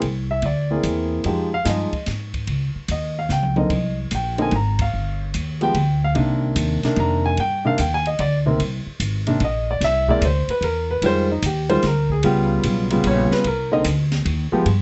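Swinging in 3/4 at 147 BPM, this smoky, moody jazz piano trio fragment in C minor sets a growly pizzicato upright bass and an open drum kit with a boomy kick and high-tuned snare beneath an intimate vintage upright piano whose woody action noise and long sustain sit up front, with a drum fill at 3.3 seconds, a band accent at 4.7 seconds and a piano solo from 8.6 seconds in a lightly reverberant, dark-topped mix.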